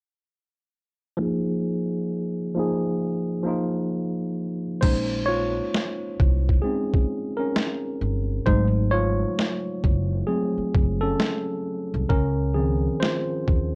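A swung 66 BPM lo-fi hip hop groove in Bb minor, nostalgic and melancholic, opens at 1.2 seconds with a mellow, slightly out-of-tune tine electric piano under a low-pass filter sweep; at 4.8 seconds a gritty, pitched-down boom bap sampler-style drum kit arrives, overdriven, with a thumpy kick, high-tuned snare and crash cymbal, alongside a woody pizzicato upright bass, while the electric piano takes a solo over chords moving from Bbm11 to Dbmaj7, the whole mix sitting in light reverb with a worn, warbling cassette tape drift in this excerpt cut from a longer piece.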